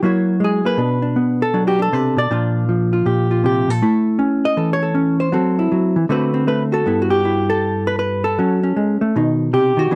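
A dark, clean hollow-body electric jazz guitar plays solo and up front, fingered and compressed, swinging through a playful, warm solo jazz excerpt at 158 BPM in 4/4, moving over rich chords like F#7, Bm7 and A#69 before settling into G major at 6.9 s with a Gmaj13, all captured as a dry, close 1970s-style studio recording.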